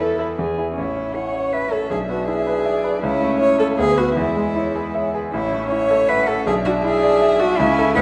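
In a straight, quick 3/4 at 159 BPM, this lively, spirited classical-period movement for piano quartet in A major moves through E, A, E7/B, A/C# and Bm/D. The concert grand piano sits up front with a brilliant, present sound and deep bass, carrying the accompaniment from A1 to E5. The cello plays a second line from E4 to C#5, close and intimate, with light vibrato, airy sul tasto bowing and a soft attack. The violin carries the melody from G#4 to G#5 but is set in the background, woody and distant with vibrato. The viola's dark, pure, floating accompaniment is bowed sul tasto, and all four players sound throughout this 8-second cut from a longer piece, heard in a moderate recital hall reverb.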